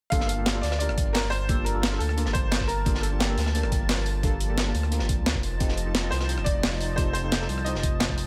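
A smooth, dark synth bass sits up front in this rolling, lush liquid drum and bass drop at 175 BPM in G minor, moving from Gm9 to F7 under a deep, soft chord stab with chorus and analog delay and a thick, airy unison pad that pumps in the background. A clear, worn grand piano carries the melody through analog delay, pausing at 3.7 seconds and returning at 6.1 seconds. An overdriven, knocking electronic kick drives the drums alongside a gritty, tape-toned sampler-style breakbeat kit of hi-hat, rim click and snare, while a crunchy, saturated breakbeat kit with filtered hats and snare sits further back in an echo-heavy mix with light small-room reverb.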